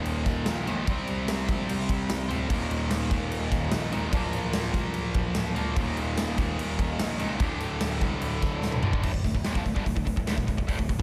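A driving 147 BPM heavy metal pulse in straight 4/4, cut from a longer piece, sets a relentless, dark mood in D phrygian, with a big acoustic rock kit up front, its punchy kick, bright cymbals and medium-tuned snare playing through a fill at 8.6 seconds before the music shifts into a new section at 9.0 seconds. A double-tracked, overdriven electric guitar plays a bright, picked riff over power chords moving through Eb5, C5, Bb/D and D5. Beneath it, a dark, mellow baby grand piano carries the bass line in a worn, long-sustaining low register, all set in a small room with light reverb.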